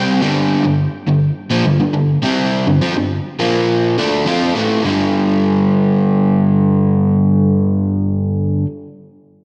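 Drenched in a lush hall reverb with a big arena sound, this swaggering, brooding rock excerpt in G minor at 104 BPM centres on a crunchy, double-tracked electric guitar riff, overdriven and picked up front from G2 to F4, moving through G5, Bb5 and Dm9 before returning to G5 at 4.8 seconds, and it is cut from a longer piece.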